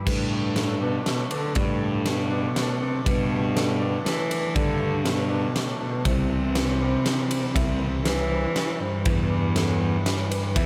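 Soaring and hopeful, this post-rock excerpt moves at 120 BPM in a straight 3/4 lilt, in G major, drifting from Gadd9 to C at 6.1 seconds and on to Em at 9.1 seconds. A single bowed cello carries the melody up front, its vibrato tone focused and smooth on top, with digital delay trailing its lines. Beneath it, a clean, fingered electric guitar spins twangy, compressed arpeggios through its own delay, while a felt-muted upright piano adds soft, boxy, dark arpeggios from the background, also echoed by delay. A picked electric bass, overdriven into warm fuzz, anchors the low end alongside a big acoustic rock kit set up front, with a punchy kick, fat snare and bright crash and ride cymbals ringing in a big room. The whole passage sits in a studio ambience, every part joining within the first moment and playing through to the cut at 10.7 seconds.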